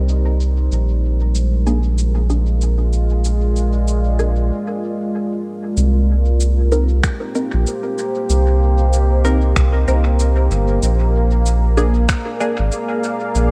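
A round, up-front analog bass anchors this hazy, spacious ambient dub excerpt, its tube-saturated tone sitting deep and dark beneath the rest of the mix. Set at 95 BPM in 4/4 with a 16th-note swing and in C minor, the music moves between Cm7 and Bb7 across two sections, with a break from 4.5 to 5.8 seconds. A moody pad of detuned sawtooth unison and sub-octave layers holds sustained chords throughout, its slow attack and long release softened by chorus and built-in reverb. Muted, full-bodied chord stabs with a filtered pluck enter at 1.7 seconds, colored by phaser, subtle chorus, cassette tape character and dub echo. Electronic cabasa and finger snaps, low-pass filtered and sent through dub echo, sit quietly in the background, while a soft electronic kick joins at 7.0 seconds and drops out at 12.2 seconds. A light reverb gives the mix its sense of room.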